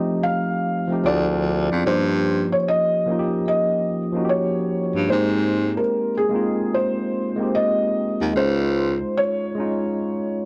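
A felt-muted upright piano opens this reflective, hazy lo-fi hip hop fragment, its thick-felt melody sounding dark and mellow, while a tine electric piano plays accompaniment beneath it, slightly out of tune, worn and heard as if through built-in speakers with a cassette-tape colour. At 1.1 seconds a breathy baritone saxophone enters to carry the bass line, its whispered subtone, soft attack, scooped notes and light vibrato giving an intimate, jazz-style voice placed up front. The saxophone drops out at 9.0 seconds, leaving the two pianos to finish the passage. The harmony drifts from F7 through Ddim7 and Eb7/G to settle on Abmaj7 and then Dbmaj7, over a lazy swung sixteenth-note feel. A moderate plate reverb and a warbling old-tape character with drifting pitch lend the whole mix a faded, dreamy cast.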